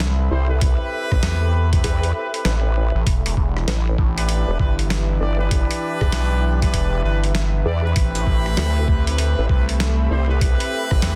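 A swung glitch hop groove in 4/4 drives this gritty, swaggering excerpt, built on a boom bap sampler-style kit of hi-hat, rim click and medium-tuned snare with studio reverb, joined at 0.6 s by a thumpy, pitched-down electronic kick. Two up-front basses share the low end: a nasal, wave-folded driven synth bass and a vowel-sweep wobble bass with chorus. Punchy, brilliant horn stabs with tape echo enter at 0.3 s over an airy, breathy pad, and a warbly, nostalgic pad arrives at 3.1 s as the harmony moves from Am7 to Em7 and back, with sidechain pumping on the pads and horns in a dense, heavily limited mix.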